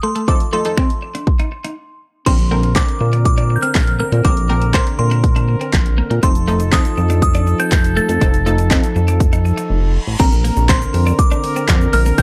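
A dry, gritty recording opens this carefree, upbeat dance-pop excerpt with a crystalline FM synth bell melody over a twangy, chorus-treated twelve-string electric guitar riff, while punchy, layered house drums with finger snaps, handclaps and shaker sit up front alongside bright, detuned sawtooth chord stabs pumping in the background. After a short break, a dark, saturated pulse-wave synth bass and a mellow brass section holding tight sustained chords enter at 2.3 seconds, both pumping with the sidechain. The drums drop out at 9.7 seconds as a reverse cymbal rises into the final stretch, where the full arrangement returns on a Bbadd9 chord.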